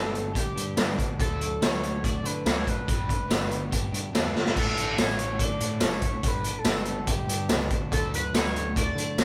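Wistful and jangly, this indie rock passage moves at 143 BPM in a straight 4/4, cut from a longer piece and played by a band live in one room with light reverb. A tearing, full-bodied sync lead carries the melody between G4 and D5, its sawtooth tone colored by chorus, phaser, vibrato and portamento. Beneath it, a twelve-string electric guitar adds a clean, twangy riff while a distorted electric guitar with a scooped tone plays its own riff, both sitting very quiet in the mix. A growling picked electric bass, overdriven yet round and punchy, anchors the low end from F#1 to D3. The raw garage drum kit enters at 0.1 seconds and sits up front with a boomy kick, gritty saturation, a rolled-off top, tambourine and crash, marking a drum fill at 4.3 seconds. The chords move through G, D and Asus4 across two matching sections.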